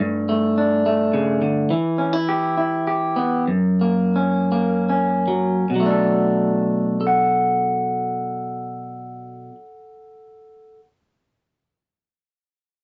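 Folk in B minor and 3/4, reflective and heartbroken, with a tempo that moves between 69 and 106 BPM and slows from 1.7 to 5.7 seconds as the chords pass from Gsus2 through Em and F# before settling on Bm7. A lone electric guitar through a small old amp carries the accompaniment, picked up front with a twangy, slightly broken-up tone. The sound is heavily compressed and radio-like, its top end cut above 7.8 kHz, set in a modest booth ambience in this short fragment of a longer piece.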